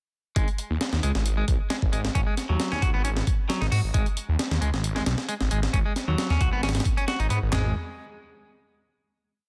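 Energetic and swaggering, this short breakbeat piece drives at 134 BPM in straight 4/4 in G# minor and stays on a single G#7(no3) chord throughout its drop from 0.4 to 7.5 seconds. Up front, a sampler-style drum kit runs a looped, edited breakbeat that is pitched up and compressed, with a gritty, tape-warm grit on its thumpy kick, medium-tuned snare, hi-hat, handclaps and toms. Matching the drums in level, a thick detuned sawtooth bass plays a funky syncopated line, its saturated tone made swirling by a phaser. Sitting further back, a bright, twangy clean electric guitar repeats a picked 32-step sequence through delay. The parts give way to a final note that rings out until 9.3 seconds, all held in a dense, heavily limited modern master with digital ambience.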